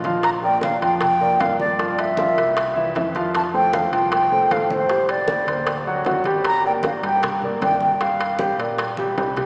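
An airy, mellow silver flute with expressive vibrato carries the melody up front from 0.2 to 8.6 seconds over a dark concert grand piano, a round, punchy fingered electric bass, ringing metal-shell timbales, tight high-tuned bongos and low-tuned congas in this driving, sultry Afro-Cuban jazz passage in G minor at 154 BPM, moving through chords such as Gm7, C7 and Daug7 and bathed in a wet cathedral reverb with a small-speaker sound before a drum fill at 9.0 seconds.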